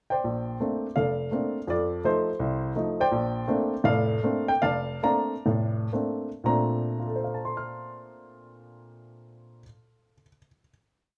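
This is a short solo jazz piece in B-flat major for a single warm baby grand piano, with a sophisticated, intimate mood. It moves in a swung 4/4 with a rubato feel, the tempo ranging from 114 to 169 BPM and slowing down between 3.1 and 6.5 seconds. The piano spans from F1 to F6, pairing short hook-like melodic motifs with a stride accompaniment in the lower hand and close voicings over Bbmaj9, F7 and a return to Bbmaj9. After a brief pickup, the phrase gives way to a final chord that rings from 6.5 to 10.6 seconds. The instrument sounds natural and up front with short sustain, audible action noise and a moderate studio reverb, as if captured live in one room.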